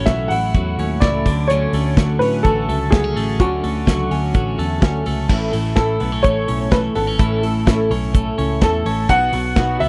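Breezy and youthful, this jangly indie pop piece moves at 126 BPM in a straight 4/4. A worn, woody upright piano, slightly detuned and set forward, carries the melody through a tape echo, while a full-bodied fingerpicked dreadnought acoustic guitar supplies accompaniment beneath it. A clean, compressed twelve-string electric guitar plays arpeggios bathed in spring reverb, and a foam-muted picked bass adds a round, amped low end. The drum kit, entering at 0.1 seconds, sits up front with a tight kick, a medium-tuned snare, hi-hat and crash, its sound dark and smooth with a rolled-off top. The harmony opens on A6 before settling into Dmaj7, then shifts to A at 5.3 seconds as a new section begins, reaching B near the end of this cut from a longer piece, all captured in a dry, close 1970s-style studio sound.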